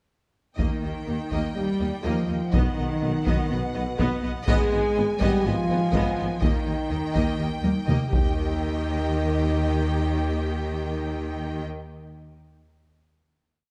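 Cinematic, epic orchestral film score in Eb major at 124 BPM, adventurous and triumphant, where a close, smooth violin section carries the melody over a lush, softly attacked second violin ostinato, rich violas, a mellow French horn section, cellos doubling the tune at the octave, a distant double bass ostinato and a background tuba doubling the bass line, all driven by a compressed, saturated taiko ostinato with a drum fill at 7.6 s before the final hit at 8.4 s rings out in a moderate scoring-stage reverb within a dark, warm production.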